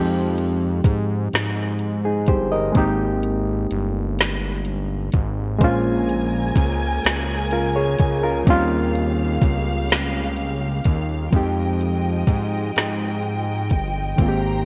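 Bright 1980s-style digital production with light reverb frames this tender, slow six-eight R&B excerpt at 42 BPM, where a gritty, barky overdriven reed electric piano heard through a combo amp and an up-front, fat, detuned sawtooth analog bass carry Fm9, Abmaj9, Bbm9 and Eb13 chords, a smooth electronic drum kit with soft kick, woody snare, metallic hats and gated reverb enters at 0.4 seconds, and a warm, intimate bowed string section with vibrato and soft sul tasto sustained chords joins at 5.6 seconds.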